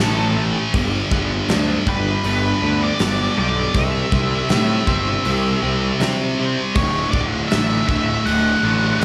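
A scooped, high-gain guitar sits up front, picking a distorted riff that anchors this short cut from a longer quiet-loud alternative rock piece. A growly fuzz bass, overdriven and equally forward, thickens the low end, while a big acoustic drum kit, with its punchy kick, fat snare and hi-hat, drives a straight 4/4 beat with a large-room feel. Above them, an octave-fuzz lead guitar carries the melody in a warm, distorted tone. A bright, compressed twelve-string electric guitar picks clean arpeggios far back in the mix. The harmony moves from A through G and C to D, giving the passage a bittersweet yet anthemic lift, with a small-room ambience around the band.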